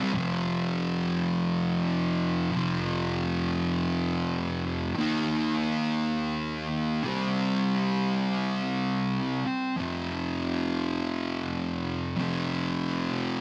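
Rowdy and swaggering, this rock excerpt is a picked, double-tracked fuzz guitar playing alone and up front, its distorted tone trailed by tape echo in a wet small room as it moves through F5, Eb5, C5 and back to F5 at 9.8 seconds.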